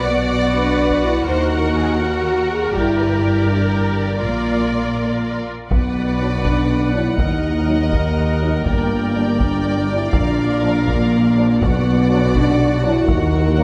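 Bathed in the wet reverb of a scoring stage, with some lossy compression artefacts audible, this cut from a longer cinematic orchestral film score sounds heroic and dramatic, moving at 81 BPM in a straight 6/8 in B harmonic minor. A dark French horn section holds sustained chords, while a rich, lush violin section carries the melody from a distance and a second violin section adds a soft-attacked, expressive line with a smooth top. A clear, focused viola section plays the accompaniment, and underneath, a woody cello section sits in the background beside a warm, bowed double bass section. A taiko ensemble enters at 0.9 seconds, its hard sticks sounding close and dry against the reverberant strings. At 5.7 seconds, as the section repeats, a close-miked tuba joins the bass, followed at 6.2 seconds by a tight, roomy trombone section adding background chords. The harmony cycles repeatedly through Bm, D#m, Gm and A#, giving the passage a sweeping, epic momentum.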